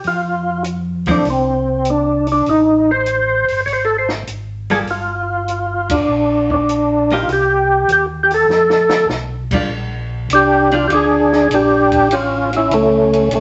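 A lightly overdriven, percussive tonewheel organ carries the melody up front in this late-night, bluesy soul jazz organ trio excerpt, its second-harmonic percussion ringing through chorus vibrato and a slow rotary speaker. Below it, a mellow, round second organ holds the bass line with the same slow rotary, while a compact cocktail drum kit with dark cymbals, a high-tuned snare and a tight kick swings at 100 BPM. A dark, compressed hollow-body archtop guitar comps from 1.1 to 11.5 seconds, and the band hits an accent near 5.8 seconds before a drum fill at 8.5 seconds leads into a new section at 9.7 seconds, all inside a wet studio reverb.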